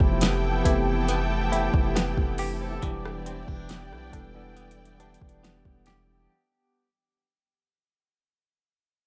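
Contemporary R&B at a slow 69 BPM in a sensual, longing mood, this short cut fades out from the start as a smooth, tape-warm electronic drum kit with a soft kick, fat snare and metallic hats sits up front beside a deep, sine-like 808-style bass, while a clean tine electric piano with lush chorus plays accompaniment, a dark, woody string section holds bowed chords with sidechain pumping, and a bright, twangy direct-recorded guitar picks arpeggios through tremolo and tape echo until 6.9 seconds, all moving from Fmaj9#11 to Em7 in a dry, close sound.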